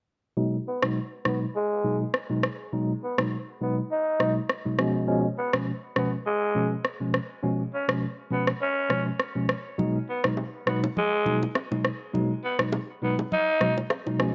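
A growling, breathy tenor saxophone carries the melody through this hypnotic, smooth afrobeats excerpt in G# dorian at 102 BPM, its raspy vintage tone softened by a low-pass filter. Beneath it a clean tine electric piano with medium tremolo, heard through a combo amp, moves between G#m7 and C#7 as a filter sweep runs across the passage. An up-front electronic rim click marks a lightly swung 4/4, and close, dry congas and bongos join at 9.8 seconds, all set in light reverb and small-room ambience under a worn cassette sheen with warbly pitch drift.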